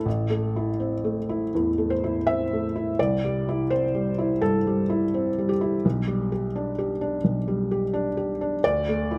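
A felt-muted upright piano plays alone from the start, its soft, mellow tone set up front with audible action noise, in a tender, peaceful neoclassical minimalist piece in C major at 84 BPM in 4/4, played with a rubato feel. The harmony moves from Am to Cadd9, then G/B, reaching Dsus2 at 8.6 seconds, with the piano ranging from A1 to E5. Close, detailed microphones and light reverb give this short excerpt an intimate, vintage character.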